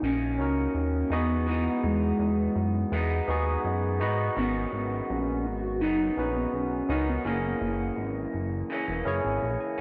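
A hollow, woody clarinet-like synth lead carries a laid-back, dreamy melody until 8.0 seconds, its phaser, ensemble chorus and tape echo floating over a barky tine electric piano, a slightly broken-up lo-fi electric guitar with subtle chorus and warbly pitch drift, and a glossy, up-front chorused synth bass, all moving through Bmaj9, Emaj7, G#m11 and F#7 in this straight 83 BPM indie bedroom pop excerpt set in a moderate echo chamber.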